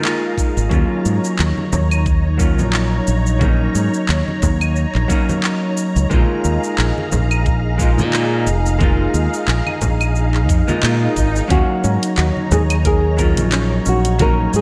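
Sunset chillout with a warm, smooth mood and a gentle swing, cut from a longer piece, built on a clean, picked hollow-body jazz guitar and a silky string machine with ensemble chorus and shimmer reverb, over a tape-warm electronic kit of claves, handclaps, hats and shaker, a knocking kick, ringing congas in the background, and a bright, punchy fingered bass up front. An electronic swell enters at 10.5 seconds, and at 11.5 seconds a thumb-plucked nylon-string guitar takes the melody with delay, joined by a soft, round pluck playing arpeggios. The sound sits in a moderate recital-hall ambience.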